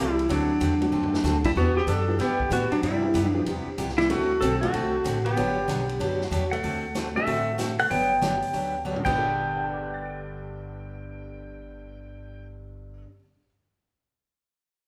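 Playful and down-home, this western swing excerpt is led by an up-front, twangy pedal steel guitar carrying the melody with slide and volume swells, while a dark, hollow-body archtop guitar plays a second line beneath it. A full-bodied dreadnought acoustic guitar with audible finger squeak and a growly, woody upright bass drive the swung accompaniment, and a jangly, detuned honky-tonk upright piano sits boxy in the background from 0.8 seconds. A vintage drum kit with dark cymbals and a punchy kick adds fills before dropping out at 9.1 seconds, with the whole band heard live in one room under a large, wet studio reverb.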